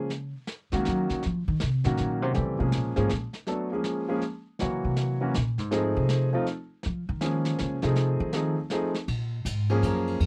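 Jazz piano trio excerpt in Bb minor, moody and swinging in 3/4 at 160 BPM, where a woody, pizzicato upright bass takes a solo until 9.1 seconds before the clear, intimate baby grand piano, with its audible action noise, takes over, all over a vintage brush kit of dark cymbals and a medium-tuned snare in a dry, close 1970s-style studio sound moving through Ebm7, Bbm7 and F7#9.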